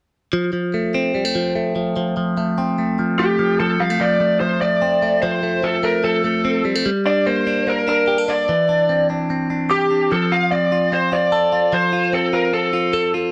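A clean electric guitar opens the excerpt at 0.3 seconds with bright, twangy arpeggios, recorded direct and compressed, sitting up front with a phaser and slapback echo. This is bright, youthful indie pop in F major at 148 BPM in a straight 4/4, cut from a longer piece. At 3.2 seconds a lead guitar through a small cranked amp enters with the melody, its overdriven tone dark and lo-fi, also picked, up front and treated with slapback echo. The chords move from F to Gmadd9 at 6.9 seconds, then Cadd9 and back to F, while the lead guitar rings on until 13.1 seconds. The sound is dry and close, like a 1970s-style studio recording with little reverb.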